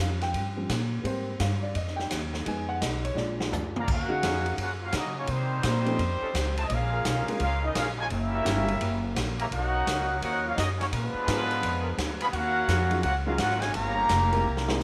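A moderate echo-chamber reverb gives this brassy, sultry big band swing a small-room ambience, with the woody, pizzicato upright bass sitting up front. At 170 BPM in 4/4 and in Eb minor, it opens with the natural-sounding baby grand piano soloing over the bass. The drum kit soon joins with dark cymbals, a medium-tuned snare and a boomy kick, and it plays a fill just before the horns arrive. At 3.8 seconds a smooth-topped trumpet section takes the melody, with a clear, distant trombone section carrying a tight second line in the background. A mellow, vintage-toned trombone section adds very quiet sustained chords with light vibrato. The piano drops out at 8.7 seconds and returns at 11.3 seconds, moving through harmonies such as Ebm11, Bmaj9#11 and Bb7b9 in this excerpt cut from a longer piece.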